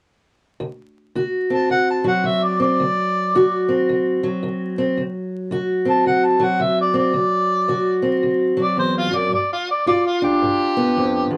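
A short booth ambience and vinyl crackle give this recording a gritty, heard-from-further-back quality, as a laid-back acoustic country blues excerpt swings along at 110 BPM in D mixolydian. A boxy, parlour-style steel-string acoustic guitar starts at 0.6 seconds, fingerpicking the accompaniment over a D7 chord that moves to G7 at 9.3 seconds. At 1.5 seconds a mellow, vintage-toned harmonica enters up front with the melody, its light vibrato and scooped notes carrying a jazz-style lilt through a touch of plate reverb.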